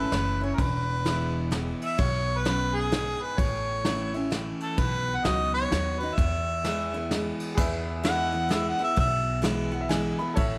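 Honky-tonk and classic country in a lilting, swung waltz time, this short cut from a longer piece feels heartfelt and nostalgic. A harmonica carries the melody up front, its tone mellow with vibrato and a soft attack, sounding distant and roomy in a jazz-inflected style. Beneath it, a picked steel-string acoustic guitar rings bright and full-bodied over a woody, thumpy pizzicato upright bass with gut strings, while a brushed drum kit with dark cymbals and a punchy kick keeps a natural studio-room feel. At 7.6 seconds the harmonica moves into a solo and a bright, brilliant grand piano joins, its slightly worn character and deep bass adding a fill from 9.4 seconds. Moderate spring reverb lends the whole arrangement a gentle, old-time glow.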